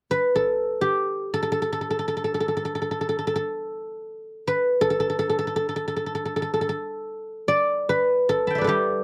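Elegant and flowing, this short cut from a longer Chinese traditional piece features a solo guzheng in free time, set in the A shang mode. Played with fingerpicks and placed up front, the acoustic guzheng sounds silvery and ringing as it moves between G3 and B5 from 0.1 seconds, shifting into a new passage at 7.1 seconds. The close, dry 1970s-style studio sound carries a light touch of reverb.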